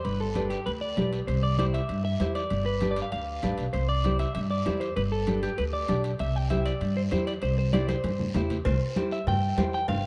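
Dark, vinyl-crackled production with light reverb frames this sunny, joyful cumbia fragment, where a twangy clean electric guitar carries the melody up front through spring reverb and slapback echo over a woody pizzicato upright bass, fingerpicked nylon-string guitar accompaniment with audible finger squeak, bright compressed congas, ringing timbales and cowbell in the background, and a raspy guiro, with a drum fill from 7.9 to 8.7 seconds leading into a new section.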